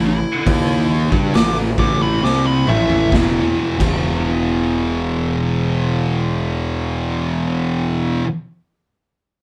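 Stoner and doom metal at a slow 66 BPM, ominous and hypnotic, cut from a longer piece with a band playing live in one room under light reverb. A dark, fuzzy lead guitar solos over the opening until 3.1 s while the tempo slows and a raw garage drum kit, saturated and gritty with a punchy kick and rolled-off top, plays a fill from 2.2 s before dropping out at 4.1 s. Two thick fuzz guitars grind out the riff throughout, one up front and the other in the background, over a growly, overdriven picked bass as the chords move from A5 to E5.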